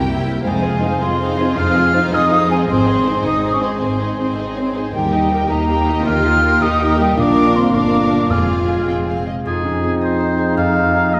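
Heard from deep within a wet scoring-stage reverb, this determined, adventurous cinematic excerpt in F minor moves at 107 BPM in 6/8, with two lush bowed violin sections, rich violas, smooth cellos and double basses, and a ringing fingerpicked harp in the background beneath a hollow, up-front flute and mellow French horn chords, until a timpani stroke lands at 8.3 seconds and, at 9.5 seconds, a clear oboe, a smooth-topped clarinet and trumpet stabs carry the line forward as the harp and horns play on.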